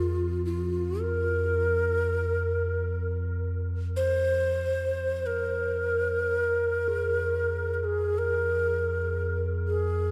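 A vast, echoing cathedral-like space surrounds this haunting excerpt of free-time meditative world music in F minor pentatonic. A breathy, hollow Native American-style wooden flute carries the melody up front with vibrato and tongued notes, trailed by a diffuse ambient delay, while a deep, rumbling drone on F2 warbles darkly beneath it with its own built-in reverb. At 6.9 seconds a bronze singing bowl enters in the background, its metallic ring slowly beating on Ab4.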